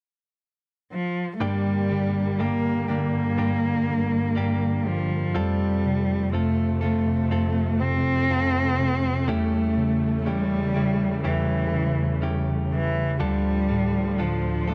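A solo bowed cello sings the melody up front with focused vibrato, opening alone at 0.9 s in this melancholic, emotional pop ballad. From 1.4 s a bright, bell-like tine electric piano carries the accompaniment, a compressed, direct-recorded clean electric guitar picks arpeggios, and a studio string section sustains chords in the background with expressive portamento as the harmony moves from G minor through F and A7/E to D minor. The dry, close sound has a 1970s studio character, and the passage is cut from a longer piece.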